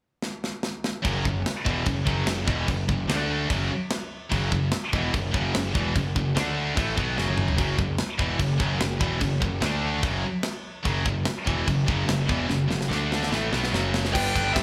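A straight 4/4 pulse at 147 BPM drives this heavy, aggressive metal excerpt in F# phrygian, opening at 0.2 seconds with a drum fill from a tight acoustic kit that sits up front, with bright cymbals, a medium-tuned snare and a tight kick. At 1.0 seconds three high-gain, picked electric guitars enter in the background with a distorted riff, one of them double-tracked. They are joined by a growly, fuzz-overdriven electric bass. The riff moves between F#5 and D5 power chords, shading into F# minor. Further drum fills break up the groove along the way. At 14.1 seconds, just before the cut, a high-gain lead guitar states a melody above a dark second guitar line, while a very quiet string section adds intimate, softly bowed sustained chords with light vibrato, all within a lightly reverberant room sound.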